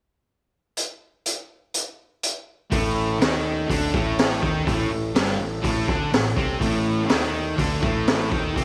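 Blues rock power trio with a southern rock edge, this gritty, driving excerpt opens with a raw garage drum kit playing alone, its high-tuned snare and boomy kick sounding saturated and up front in a small room. At 2.7 seconds a bright, double-tracked fuzz guitar riff enters alongside a growly, punchy overdriven bass and a very quiet tonewheel organ holding full sustained chords through a rotary speaker. A moderate echo chamber reverb gives the whole a studio ambience.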